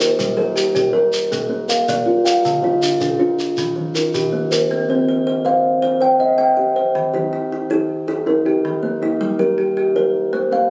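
Two up-front kalimbas, one bright and airy with a thumbnail pluck and the other hollow and boxy, weave hypnotic, rippling arpeggios through a Southern African traditional, mbira-style cycle in 12/8 at 106 BPM, joined by a grainy, close shekere until 4.7 seconds, all heard in this excerpt from a longer piece captured on a phone in a moderately reverberant recital hall with club ambience.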